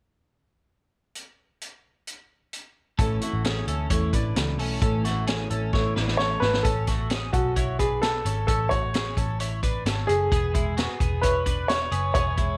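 Opening at 1.2 seconds with an up-front vintage drum kit of punchy kick, high-tuned snare and hi-hat, this breezy, youthful jangly indie pop excerpt in A major at 131 BPM brings in at 3.0 seconds a dark, round, foam-muted electric bass, a full-bodied fingerpicked steel-string acoustic guitar with finger squeak, and a clean, compressed twelve-string electric guitar playing arpeggios with subtle chorus and slapback echo, before a woody, slightly detuned upright piano with audible action noise takes the melody from 6.2 seconds, also with slapback echo, all set in a small room with light reverb and a drum fill marking the turn into the final section.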